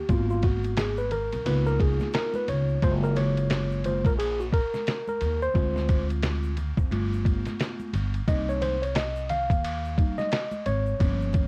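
A swung sixteenth-note groove in 4/4 drives this nocturnal, cool jazz-hop fragment, cut from a longer piece, where a muffled, pitched-down sampler-style drum kit with a thumpy kick, fat snare, hi-hat and ride sits up front beside a woody, growly pizzicato upright bass with tube saturation. A worn, slightly out-of-tune tine electric piano carries a mellow solo from 0.0 to 11.5 seconds through chords such as Abm7, Db13, Gbmaj7 and Cm7, its clean, direct tone coloured by cassette tape. Dry, close tube shaker and hard-handed congas sit in the background, and light reverb gives the whole home cassette recording a hazy intimacy.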